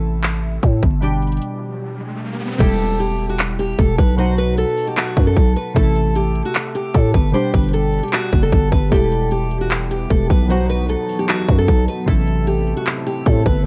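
Trap hip hop at 152 BPM in a half-time feel, menacing and dark in E minor, where a growling, buzzy 808-style bass and an overdriven trap kit with a hard-clipped kick, metallic hats, handclaps and crash sit up front beneath glassy digital keys swept by chorus, phaser and a low-pass filter, a riser from 1.6 to 2.6 s leads into a fingerpicked steel-string acoustic guitar melody with audible finger squeak and dub echo from 2.6 s, and a deep, moody ambient pad with tremolo and built-in reverb enters in the background at 9.6 s, all in a dry, echo-heavy mix dusted with vinyl crackle.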